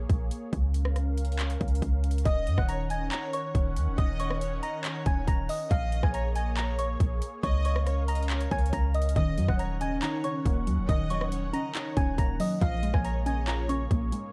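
Dark, close and dry, this brief cut from a longer trap-influenced hip hop track has an eerie, brooding mood and a heavy half-time feel. A deep, boomy 808-style bass with a sine body and noise layer sits up front beside an electronic trap kit of handclaps, metallic hi-hats, rim clicks and a hard-clipped, overdriven kick. Beneath them, an airy, evolving pad built from detuned sawtooth and noise sustains the chords with a slow filter swell and chorus. At 2.3 seconds a pure, gentle FM bell carries the melody, and a lush studio violin section adds a second line with expressive vibrato and tape echo. From 9.2 seconds a warbling, lo-fi pluck of detuned triangle, square and sawtooth layers with a sub octave and filter sweep fills in the accompaniment through chorus.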